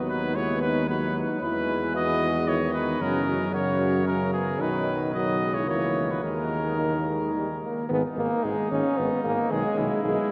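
Heroic and solemn, this brass quintet excerpt in G# minor moves at 112 BPM in a straight 3/4, with a warm trumpet carrying the melody up front over a mellow flugelhorn second line with light vibrato, a clear trombone and a vintage-toned French horn in the background, and a tuba anchoring the bass. The chords travel from B/D# through E, F# and B to a suspended D# that resolves before a new section arrives at 7.9 seconds on G#5, settling on G#m/B at 9.5 seconds. A wet cathedral reverb with a long 6.5-second decay surrounds the ensemble.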